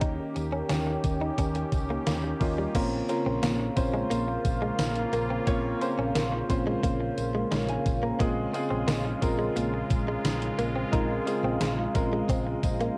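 A gated, overdriven 80s drum machine sits up front with a thumpy kick, a gated-reverb snare, crash, hi-hat and tambourine, driving this moody, nostalgic 1980s-style pop excerpt in Bb minor at 88 BPM. An intimate grand piano with audible action noise and a bright, warbling sawtooth pad with chorus carry the chords from Eb7 to Bbmadd9 at 2.7 seconds and Fm/Bb at 8.2 seconds, while a round, punchy hollow-body bass holds the low end. A clean, compressed electric guitar riff with subtle chorus and analog delay and a jingly, saturated tambourine sit in the background, all colored by cassette tape and a moderate spring reverb that gives it a home-recorded feel.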